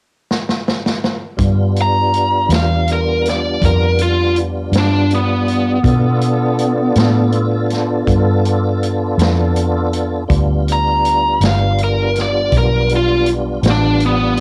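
Slow blues in 12/8 with a swaggering, gritty attitude, cut from a longer piece and captured as a home cassette recording with light reverb and small-room ambience. A vintage acoustic drum kit with a punchy kick and rolled-off top opens with a fill at 0.3 seconds, then at 1.4 seconds a dark, foam-muted fingered electric bass sits up front beneath sustained tonewheel organ chords on G9, lightly overdriven and turning through a slow rotary speaker with chorus vibrato. From 1.8 seconds a biting, overdriven lead guitar carries the picked melody.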